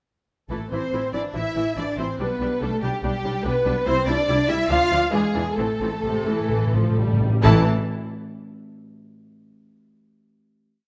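In a rubato 4/4 at 127-145 BPM that begins slowing at 3.0 seconds, this complete, fast romantic orchestral movement in A minor feels dramatic and urgent, moving from Am through G/B, C, Dm and E7 back to Am. A lush violin section carries the melody with smooth, even vibrato, doubled at the octave by a rich cello section. Darker second violins add an expressive line with portamento, a clear, distant viola section plays repeated notes, sustained chords and answers at phrase ends, an up-front double bass section holds sustained and repeated bass notes, and round, soft-mallet timpani enter at 5.6 seconds with a fill that rolls into louder sections ahead of the final A5 chord at 7.4 seconds, all within a moderate scoring-stage reverb.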